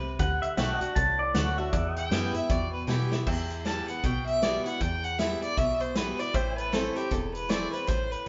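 Swung eighths at 156 BPM in 4/4 drive this brooding, dusty honky-tonk and classic country excerpt in E minor, where an up-front pedal steel guitar plays a brief melody from 0.2 seconds over a bright background pedal steel holding sustained chords, a boxy picked swing-style acoustic guitar, a snappy slap-like FM bass with a metallic attack, and a natural country drum kit with dark cymbals and a punchy kick, whose fill at 2.9 seconds leads into a nasal, focused fiddle solo with light vibrato from 3.3 seconds, all set in a wet stone-room reverb that feels like a band playing live together.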